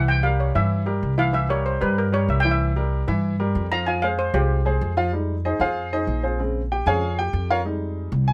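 A bright, shimmering steel pan carries the melody at the start of this driving, sultry Afro-Cuban jazz excerpt, its metallic double-seconds tone struck with hard rubber sticks and placed up front for a solo that runs until 4.8 seconds. Beneath it, a clear grand piano supplies the accompaniment throughout, then takes over with its own solo from 5.1 seconds to the close at 8.3 seconds; its sound is intimate and natural, with short sustain and audible action noise. An upright bass played pizzicato on gut strings anchors the low end, woody, dark and thumpy, sitting slightly louder than the other two parts. The tune moves at a brisk 190 BPM in a straight 4/4, in F minor and tuned to A4 = 445 Hz, passing from C7 to Fm before the piano's passage cycles through Fm7 and Bbm7. Close, detailed microphones and very little reverb keep the trio dry and present, as though the players were just an arm's length away.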